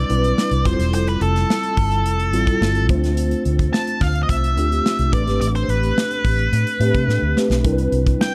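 Polished 1980s jazz-funk pop with a glossy, breezy mood, this short cut from a longer piece moves through lush Cmaj9, Fmaj9, Dm7 and Am11 chords in a straight 4/4 feel. A dark, fuzzy octave-fuzz lead guitar carries the melody with distortion and delay over a mellow tine electric piano treated with ensemble chorus, while a round, punchy, foam-muted fingered electric bass sits up front. A modern studio drum kit with a tight kick and medium-tuned snare supports the groove and plays a fill at 7.1 seconds, all set in a small room ambience with a dark, warm production.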